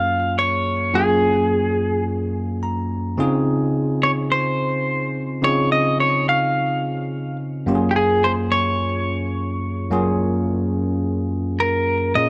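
A dark production with light digital reverb frames this bouncy, upbeat R&B fragment, set at 107 BPM in 4/4 with a swung sixteenth-note feel and tuned to A4 = 442 Hz. Up front, a clean, picked electric guitar with a compressed, twangy edge carries the melody, while a bell-like tine electric piano, bathed in lush chorus, supplies the accompaniment. The piano slips in a brief fill at 2.3 seconds as the harmony moves from Gbmaj9 to Dbmaj9 and back to Gbmaj9.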